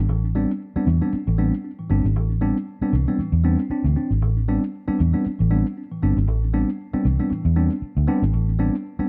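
Funk at 116 BPM in A minor, with a light sixteenth-note swing and a hypnotic, cool mood, this short cut from a longer piece sits on a single Am11 chord throughout. A vintage muted fingered electric bass, dark, round and punchy with a foam-muted, amped tone, holds the low end up front from the start. Over it, a worn, slightly out-of-tune tine electric piano plays stabs through lightly overdriven built-in speakers with a slapback echo, all set in a light digital reverb.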